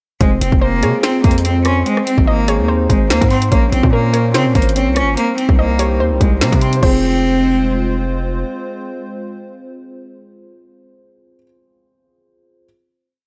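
Ominous and tense, this short drill piece moves at 145 BPM in a half-time feel in F minor, where a bright, biting cello with light vibrato loops a nasal, earthy melody up front over a dark, mellow concert grand piano repeating a pedal-note arpeggio in eighths, both sounding like sampled loops. A distorted, saturated 808-style bass with pitch slides follows the kick with long sub-bass notes, while the drill kit drives with a hard-clipped kick, a woody snare layered with finger snaps, and skipping hats with fast rolls. A hollow, airy pad with chorus sustains chords in the background, and a warbling, lo-fi pluck with chorus and digital delay adds a sparse counter-melody from 0.6 s, until the drums stop at 6.9 s and the final Fm chord rings out, the pad fading at 10.9 s and the piano lingering to 12.7 s.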